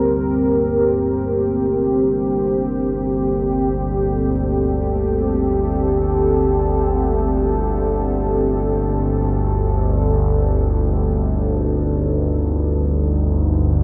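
An evolving analog drone of sawtooth and pulse-wave tones, with pulse-width modulation, chorus and phaser, fades in low and up front beneath a deep, moody pad of detuned unison sawtooth layered with sine and a sub octave, which gradually fades out over the same span. This ominous, cavernous dark ambient drone unfolds in free time in G harmonic minor, its slow-attack sustained chords shifting from Gm to Ebm at 10.6 seconds. A huge, wet reverb with a long tail surrounds this brief section cut from a longer piece.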